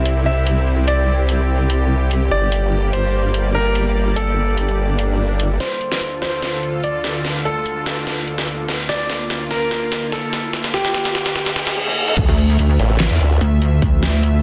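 A bright grand piano melody, filtered and carried on dub echo, opens over a lush, detuned supersaw pad pumping with sidechain and a saturated formant-sweep wobble bass in this heavy, chaotic half-time dubstep fragment at 146 BPM in D minor. An overdriven dubstep kit of deep snare, metallic hats, handclaps, rim clicks, toms and crash, present from the start, drives a build-up from 5.6 seconds, where the piano's filter sweeps while background swells, a riser and a reverse cymbal push toward the drop at 12.2 seconds. There a punchy electronic kick with the same drive and a mellow, pulsing pluck wobble bass on D2 land up front beside a brief return of the formant bass, all within a dense, heavily limited master with light reverb.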